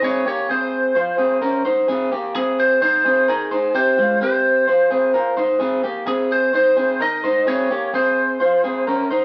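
A lightly driven lead guitar carries the melody up front, its picked tone bright, twangy and compressed as it moves between Ab4 and Eb5. Alongside it, also up front, an electric guitar through a small old amp plays picked arpeggios from Ab3 to C5, its slightly broken-up edge giving it a bright, twangy character. This short indie pop passage, cut from a longer piece, sits in Ab major at 129 BPM in a straight 4/4, and its mood is youthful and breezy. The harmony moves through Dbmaj7, Abmaj7, Fsus2 and Ab before returning to Dbmaj7 at 7.5 seconds. Both guitars play together throughout, as a band performing live in one room, with a wet studio reverb adding a sense of space around them.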